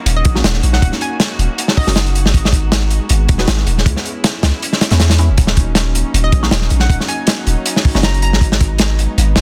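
A hushed chamber string section opens this raw, frenetic drum and bass excerpt, its bowed chords carrying light vibrato and a vintage 12-bit sampler grit that sits low in the mix. Almost at once a crunchy, saturated breakbeat kit and a deep, sine-toned 808-style bass arrive up front, driving the jungle groove at 158 BPM in 4/4 with a slight swing on the sixteenths. The kit's tight kick, medium-tuned snare and hi-hat have a gritty, mid-forward character with a rolled-off top, while the bass sustains long, mellow notes in Eb phrygian. A hollow, bouncy square-wave pluck plays a bright melody in the background from 0.2 to 2.1 seconds and again from 6.2 seconds, colored by chorus and dub echo. A very quiet, muted dub chord stab with a detuned sawtooth edge and phaser flickers beneath, following minor seventh chords that move from Ebm7 through Abm7 and Dbm7. The whole is pressed into a dense, heavily limited modern master with a small room reverb.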